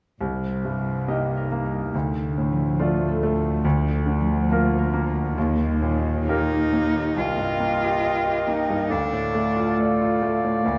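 Rubato in 4/4 at 69 BPM, this sorrowful, longing cinematic film score in C dorian, cut from a longer piece, opens with a brilliant grand piano up front and a ringing, fingerpicked concert harp over a lush, bowed symphonic cello section holding the bass through Cm7, Dm, Bb/D and Eb. At 6.3 seconds a single smooth, vibrato-laden cello takes the melody. From 7.2 seconds a hollow, airy silver flute enters alongside a distant, roomy clarinet and oboe on second lines, set in a dark, wet scoring-stage reverb.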